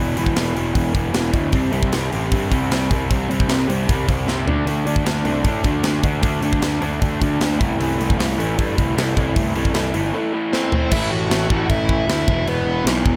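This excerpt from a punk rock track opens at once with a raw garage guitar riff, overdriven, lo-fi and double-tracked, pushed up front over a growly fuzz bass that is picked and bright. A tight acoustic drum kit joins at 0.2 seconds with a punchy kick, medium-tuned snare, hi-hat, toms and bright cymbals, its polished sound carrying a big-room airiness, and fills arrive at 4.3 and 10.5 seconds. At a straight 154 BPM in 4/4, the urgent riff moves through E5, C5, D5 and A minor before shifting to A5 as a new section begins at 10.9 seconds. A dark, smooth lead guitar, also overdriven and picked, enters at 10.5 seconds with a brief melody that runs to 12.8 seconds. The overall mix is dry, keeping the raw energy direct and immediate.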